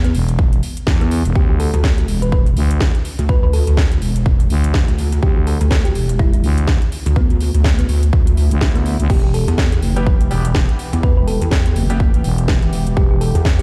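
Swaggering and bouncy, this bass house excerpt moves with a swung sixteenth-note feel, built around two heavy, up-front basses. A pulsing, distorted wobble bass with chorus, tube saturation and sidechain pumping sits alongside a growling, thick FM bass, both sharing the same low register and breathing with the same pumping. A punchy, layered electronic kick drives the groove from the front, while a house drum kit adds a cracking snare, metallic hats and crash cymbal with a tape-softened character. In the background, a dark, tine-like synth pluck warbles through chorus and dub echo, carrying the melody over chords that move from E5 to Dsus2 and later settle on E minor. A very quiet electronic swell leads into 9.1 seconds, where a detuned sawtooth pad enters with a slow attack and a resonant filter swell, followed at 10.0 seconds by brief, brilliant grand piano stabs trailed by dub echo. 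The whole track sounds as if played through a big sound system in a bare room.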